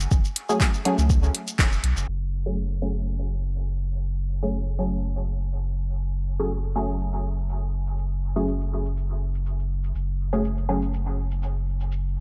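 Muted, detuned sawtooth chord stabs with a plucky filtered attack lead this hypnotic, nocturnal dub techno passage, cut from a longer piece, carried on chorus, phaser, cassette-tape grit and dub echo, and pumping against the beat. A round sine sub bass sits up front beneath them, its fast attack giving way to a sustained, mellow body that breathes with the same sidechain pumping. A deep house kit of handclaps, hi-hat and shaker shuffles with a light swing, its hits trailing into dub echo. A deep, layered electronic kick sits close and forward at the start, stopping at 1.7 seconds just after a band accent. From 2.1 seconds a filter sweep works through the decaying stabs for the rest of the passage, all set in a light digital ambience with a low-pass filter softening the top.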